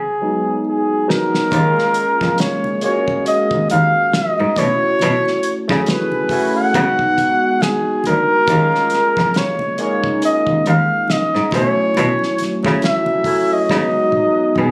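Swinging gently on the sixteenths at a slow 69 BPM in Eb minor, this sultry, smooth neo-soul R&B excerpt opens with a soft-attack warm flugelhorn melody up front, joined by a bright, barky tine electric piano with light overdrive and phaser, while a cloth-damped, thuddy drum kit with a fat snare and tight kick, a rich bowed cello bass with vibrato, and very quiet thick-skinned congas settle in by 1.5 seconds over suspended ninth chords, before a closing drum fill at 13.7 seconds.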